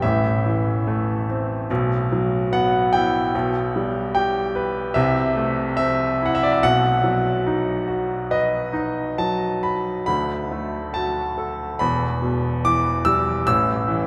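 Wistful and reflective, this short cut from a longer classical piece sets a bright, polished grand piano up front, playing lyrically alone at 71 BPM in 4/4 with a free, rubato pulse, ranging from E1 to E6 and moving from Am through Bsus4, G/B and a long B to D, Em and a closing A5, its long sustain blooming into a wet cathedral reverb that leaves the 14.1-second passage hanging in a vast, echoing space.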